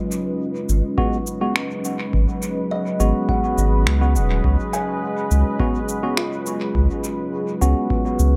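Ambient dub, spacious and deep, built on a moody, detuned sawtooth pad sustaining chords that move from G#m7 to C#7sus4, with a round sine sub bass up front from 0.7 s, a soft, woody kalimba playing arpeggios through dub echo in the background, overdriven electronic cabasa and finger snaps carrying dub echo too, and a clean tine electric piano adding echoed stabs over a tape-warm analog kick from 1.0 s, set in a light-reverb, echo-heavy mix.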